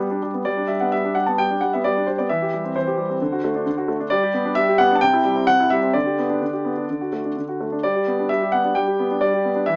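A classical-period piano sonatina in G major, elegant and playful, moving at 131 BPM in 4/4 with a rubato feel. A clear baby grand piano plays solo from 0.0 to 9.8 seconds, spanning C3 to A5 with a natural, up-front tone and long sustain, tracing a G, C/E, D, G, C, G/D, D, G progression. Light reverb and a small-speaker sound color this short cut from a longer piece.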